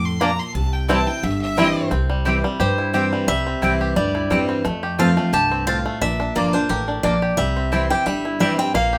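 A bright, fresh-stringed picked steel-string guitar carries the melody from 2.6 seconds, its full-bodied dreadnought tone marked by audible finger squeak. Before it, a clear, nasal fiddle with light vibrato and an earthy, distant bowed sound takes a short solo that ends at 1.9 seconds. Beneath them, a second picked steel-string guitar sits up front with a warm, dreadnought accompaniment, while a twangy, percussive banjo played with fingerpicks picks out arpeggios. A round, double-strung mandolin adds picked stabs, and an upright bass with dark, woody, thumpy gut strings anchors the low end. This driving, joyful bluegrass excerpt swings lightly in four over a moving Bb, C and F progression, set in a moderate studio reverb.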